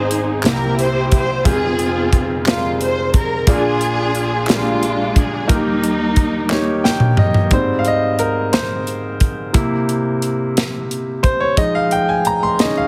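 Soulful and reverent, this slow gospel excerpt in 6/8 moves at 59 BPM in Ab major, with a lush, bowed string section carrying the expressive, vibrato-rich melody over a brilliant grand piano, a polished fusion drum kit with a tight kick and medium-tuned snare, and close, dry group handclaps. Around 6.5 seconds the drums and piano share a fill, the strings and claps drop out at 6.8 seconds, and from 7.5 seconds the piano takes a solo over chords moving from Abmaj7 through C7 to Fm7. The sound is heavily compressed like radio, with light reverb.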